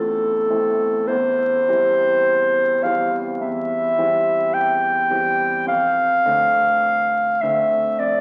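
A clarinet and a grand piano begin together at 0.0 seconds in this short romantic classical duo, lifted from a longer piece, its mood melancholic and yearning. The clarinet carries the melody between A4 and G5, dark in colour with a smooth top, played solo in a classical manner and placed up front, well above the piano in level. Beneath it the concert grand supplies accompaniment from E2 to C4, clear and natural, with deep bass and long sustain. The music moves slowly at 52 BPM in 4/4 with a rubato feel, in C major, passing from A minor to C over E and then to D minor seventh over F at 5.7 seconds. A generous scoring-stage reverb surrounds both instruments, and the whole sounds like a very old 78 rpm record, with vinyl crackle and a top end that stops at 11.0 kHz.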